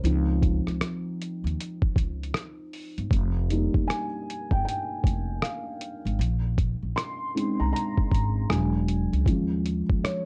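Nostalgic and melancholic, this short cut from a longer lo-fi hip hop piece moves at an unhurried 4/4 pace with a swung sixteenth-note feel and a dark, warm production. A felt-muted upright piano carries the harmony and takes a solo across the whole passage, its tone soft, boxy and intimate, with thick felt and audible action noise, set in cassette tape colour and plate reverb. An upright bass sits up front beneath it, plucked pizzicato with a woody, thumpy acoustic sound on steel strings, and stops at 10.0 seconds, just before the others. A compressed, sampler-style drum kit, pitched down and muffled, supplies a thumpy kick, hi-hat and rim click with a tape-warm character. The chords drift from Dbmaj7 through F7sus4 and Bbm11 before a brief turn to E9 and Eb7sus4 in the closing seconds.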